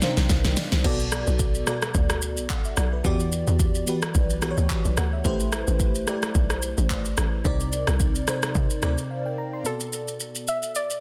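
A hollow, bouncy log drum bass drives this late-night, soulful amapiano excerpt, riding over a tape-warm deep house kit of deep kick, fat snare with soft clipping, handclaps, rim clicks, hi-hat, shaker and crash, while a lush, dreamy FM electric piano with a soft pad layer adds chorus and tremolo across the minor-seventh chords; the bass stops at 9.0 s, and after a brief break a soft, round, dark pluck with chorus and delay carries the melody from 9.7 s, all set in light reverb within a dense, heavily limited modern master.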